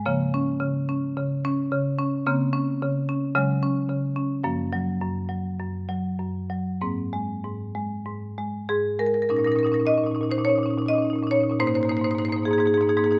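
Contemporary classical music for solo marimba, flowing and hypnotic, moving in a rubato 4/4 between 94 and 111 BPM in Bb minor across a 13.2-second excerpt cut from a longer piece. The marimba, struck with medium hard mallets on padauk bars, sounds woody, percussive and somewhat vintage and band-limited, sitting up front through close, detailed microphones in a moderate recital hall reverb. Rich chords such as Bbmadd9/Db, Gbmaj7 and Abadd9 carry the opening section before a new passage begins at 9.3 seconds on Bbmadd11.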